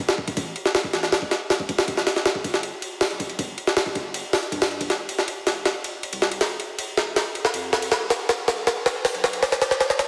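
A gritty, sampler-style jungle drum kit sits up front, its pitched-up, compressed hits built from a thumpy kick, a high-tuned snare, hi-hat and ride cymbal with a tape-warm edge. This drum and bass cut runs at 159 BPM in 4/4 with a straight feel in A minor, and the mood is frenetic yet nostalgic. A soft dub sub bass plays from 0.1 s, deep and round with a fast attack and sustained tones, tucked low in the background beneath the kit. The whole passage works as a build-up, with a drum fill running from 4.9 s to the end at 10.1 s. The sound is drenched in a lush hall reverb and digital ambience, squeezed into a heavily compressed, radio-like tone with vinyl crackle that deepens the nostalgic character of this short section cut from a longer piece.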